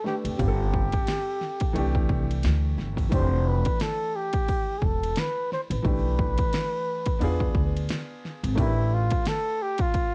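A breathy, whispered flugelhorn with vibrato sings an intimate jazz solo through plate reverb over a smooth, vintage upright piano at the very start of this mellow, smoky jazz-hop excerpt at 88 BPM, with a punchy, layered electronic kit of fat snare, metallic hats, ride and kick swinging in from 0.1 s, and a dark, thumpy pizzicato upright bass on gut strings, thickened by tube saturation, sitting up front from 0.2 s to 9.1 s as cassette-tape colour tints the home-recorded sound and the harmony drifts from G9sus4 through Fmaj9 and E7b9 to G13.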